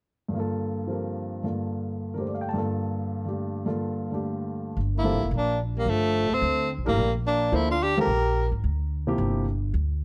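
A swung 4/4 pulse drives this hypnotic, searching modal jazz fragment: a dark, mellow grand piano with audible action noise opens alone at 0.3 seconds on a Gm9 chord, a woody, thumpy pizzicato upright bass enters at 4.8 seconds as the harmony shifts to Gm7, and at 5.0 seconds a breathy, whispered tenor saxophone with vibrato and plate reverb takes the melody up front while a distant, roomy trombone sounds a second line in the background, inside a lightly reverberant room.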